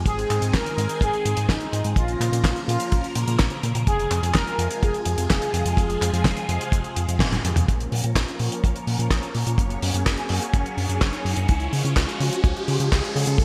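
Italo disco at 126 BPM in F minor, melodramatic and bittersweet, where a swirling, phased string machine holds sustained chords over a round, deep analog bass, a fat, nasal analog synth brass carries the melody with chorus and digital delay until 7.2 seconds, when a band accent and a drum fill from the dry, damped 70s kit and tight kick lead into a filter sweep on the strings, and an electronic riser enters at 9.5 seconds, all set in a lush hall reverb with bright 1980s-style digital production in this excerpt from a longer piece.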